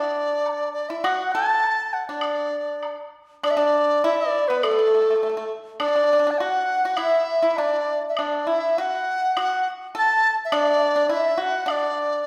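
A loose, rubato pulse in 2/4 moves at about 102 BPM through this pastoral, festive passage of Chinese traditional chamber music in a D gong mode, cut from a longer piece. Up front, the large dizi carries the melody between A4 and A5, its bright, reedy bamboo tone buzzing from the membrane, tongued and touched with vibrato while still sounding pure. Beneath it, the pipa plays a second line from A3 to A4, plucked with fingerpicks in a dry, percussive acoustic voice, and a woodblock with a small-room character joins at 0.5 seconds. At 3.4 seconds a very quiet, distant xiao enters with another second line, its end-blown bamboo sound airy, mellow and hollow, held in straight tone with crisp attacks. The ensemble sits in a reverberant recital-hall space, like a church or concert hall.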